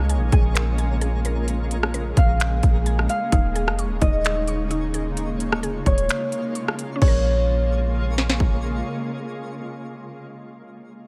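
Atmospheric cloud-rap hip hop in a melancholic, hazy half-time feel, built on a shimmering, ethereal ambient pad with slow-attack sustained chords and sidechain pumping, a twinkling granular texture, and a woody, round synth pluck playing arpeggios in the background. A mellow, fingerpicked concert harp carries the ringing melody through filtered delay, while a deep, boomy 808-style bass and an up-front trap kit with hard-clipped kick, sharp snare, crisp hats, snaps and rim clicks drive the groove. A brief break arrives from 6.1 to 7.0 seconds before the harmony returns to its opening chord in this excerpt cut from a longer piece.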